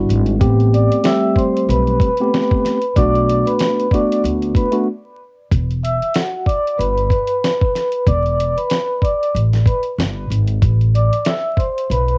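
Cut from a longer piece, this home cassette recording carries vinyl crackle and a light reverb, giving it a lo-fi, worn-in character. It is reflective yet tough boom-bap hip-hop with a swung sixteenth-note feel, built on a gritty, compressed sampler-style drum kit whose thumpy kick and fat snare sit up front alongside the hi-hat. An upright bass plays pizzicato with a woody, dark tone from its steel strings, while a mellow, clean tine electric piano adds chords through a cassette-tape filter before it drops out at 4.9 seconds. A vibraphone played with soft mallets carries the melody from 0.7 seconds, its metallic, ringing tone shimmering with fast motor vibrato under the same tape and filtering. The harmony moves through Am9 and Bm7 before a brief break leads into a second section at 5.5 seconds, which settles on Em7 and then Amadd9.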